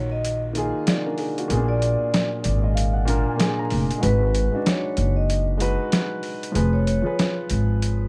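Tough and dark, this brief boom-bap hip-hop excerpt moves at 95 BPM in 4/4 with a swung 16th-note feel, played as a break from the first second. A mellow, vintage-toned grand piano carries the accompaniment with long sustain through the chords Ebmadd9, Bb7, Abm7 and Fdim, while a woody, thumpy upright bass, played pizzicato, sits up front in the low register. The sampler-style drum kit comes in at 0.2 seconds with hi-hat and a medium-tuned snare, sounding compressed, pitched down and gritty from its overdrive. Above them, a ringing, metallic vibraphone with medium mallets and its motor off plays the melody until 7.3 seconds, filtered and touched with delay. Studio reverb and vinyl crackle give the production a dark, warm sound.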